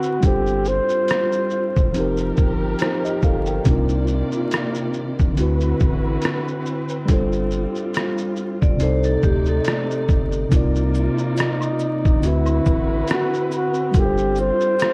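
Reflective and hazy, this lo-fi hip hop excerpt rides a gritty, pitched-down sampler drum kit with a thumpy kick, hi-hat, rim click and shaker. Alongside sit a thick, saturated sub bass, a mellow, slightly out-of-tune tine electric piano up front and a bowed string section whose portamento drifts through lush suspended and extended chords. A breathy, whispered flugelhorn sings up front in the opening seconds and returns at 11.4 s; a dark, ringing vibraphone on hard mallets adds a brief second line with analog delay, while maracas and woodblock tick quietly in the background from 10.5 s, all wrapped in worn, warbling cassette tape and vinyl crackle.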